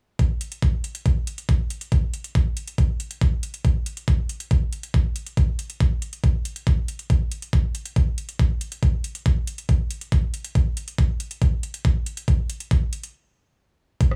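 Trance at 139 BPM in a straight 4/4, intense and driving, built from an up-front, knocking electronic kick and a layered garage kit of metallic hi-hats and rim clicks sitting much lower in the mix, both with a tape-warm character in a small-room digital ambience, before a stop at 13.1 seconds closes this fragment of a longer piece.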